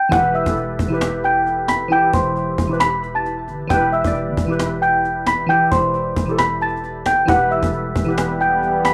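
A delicate, bell-like celesta sits up front and carries the melody from the very start, its soft felt-hammer tone softened further by a low-pass filter and trailed by tape echo. This is a brooding, dark hip hop excerpt in a trap vein with a half-time feel, resting entirely on an E minor chord. Beneath the celesta, glassy digital keys with a detuned, airy shimmer provide accompaniment through chorus and a low-pass filter, while a growling, buzzy 808-style bass anchors the low end. A snappy, close-miked cajon played with hard hands supplies the percussion. At 8.0 seconds a deep, moody ambient pad enters with slow-attack sustained chords, bathed in chorus and its own reverb. The recording has a dry, gritty hardware character with small-room ambience and studio reverb.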